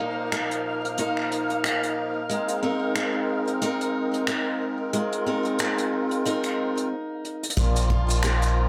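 A swung 16th-note lilt at 91 BPM in 4/4 carries this delicate folktronica excerpt, with a jazz brush kit of finger snaps, hi-hat and shaker sitting up front under a picked, boxy steel-string acoustic guitar playing arpeggios through a low-pass filter sweep and delay, while a reedy, shimmering musette accordion holds sustained chords moving from Bbsus4 to Abadd9. A grainy, flickering granular texture hovers in the background until a stop at 6.9 s, and a drum fill at 7.2 s leads into the closing section. At 7.6 s a round, deep analog bass with tube saturation lands on Bb1 alongside a dark, smooth kick as the chords return to Bbsus4, all within a small, wet room.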